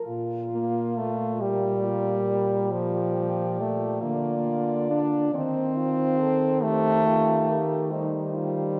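A worn, warbling old cassette with a drifting pitch carries this serene, lyrical classical excerpt for horn quartet, set in a wet church reverb. In 12/8 at a rubato 46 BPM in Bb major, a vintage-toned warm French horn sings the melody from the background while a clear horn with vibrato traces a second line above a dark, smooth-topped bass horn. An up-front warm horn with light vibrato adds accompaniment, entering at 0.5 seconds, as the harmony rests on Bb before moving to Cm/Eb at 5.3 seconds.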